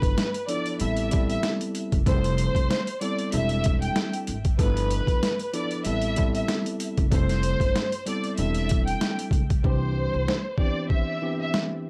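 Boom-bap hip-hop at 95 BPM in C major, with a soulful mood and a lightly swung 16th-note feel, taken from a longer piece. A lush, bowed violin section carries the melody in a smooth, close vibrato, filtered at both ends and touched with tape echo, while a worn, slightly out-of-tune tine electric piano supplies accompaniment through a cassette-tape haze. Beneath them, a woody pizzicato upright bass on gut strings adds tube-saturated thump until 10.3 seconds, and a pitched-down, overdriven sampler-style drum kit sits up front with a thumpy kick and high-tuned snare. The harmony cycles through rich extended chords like G13, Am9 and Fmaj9#11 before settling on Cmaj7 at 9.6 seconds, where the hi-hats drop out for the closing section. The sound is dry and gritty, with transformer saturation and a bed of vinyl crackle.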